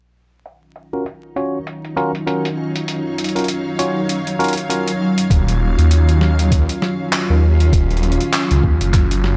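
Vinyl crackle, a faint mains hum and light reverb frame this playful, gritty glitch hop excerpt at 99 BPM in Eb minor, where a nostalgic, warbling lo-fi pad sustains chords, opening on Ebm9, with chorus and sidechain pumping, soon joined by a blurred, evolving granular cloud pad. A pitched-down, sampler-style boom bap kit of handclaps, a medium-tuned snare and low-passed hi-hats rides a swung 16th feel under a filter sweep, while bright, bell-like electric piano stabs with tape echo sit up front from 0.9 to 4.9 seconds. At 5.3 seconds a thick, swirling detuned saw bass with phaser arrives alongside a thumpy, tape-warm electronic kick.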